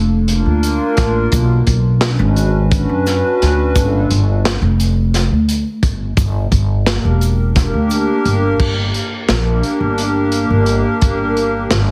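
Set in a straight 7/8, this brooding, intricate stretch of progressive instrumental band music rides on a crunchy, saturated breakbeat kit with dark cymbals and a tight kick, a woody, growly pizzicato upright bass up front, a hollow, airy, flute-like pad thickened by chorus, and a grainy egg shaker sitting distant in the background until 8.2 s, all squeezed into a heavily compressed, radio-like sound with light reverb as the harmony moves through minor colours before settling on G minor.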